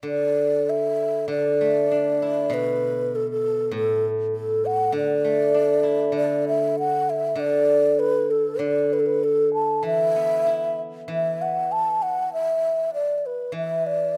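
A close, detailed recording with light reverb presents a Chinese chamber ensemble in a festive, pastoral excerpt in the D gong mode, moving at a straight 98 BPM in 4/4. A breathy, hollow low xiao carries the melody up front with vibrato and tongued notes, entering at 0.1 seconds. Beneath it, a silvery steel-string zither played with fingerpicks rings out in accompaniment from the very start, also sitting up front.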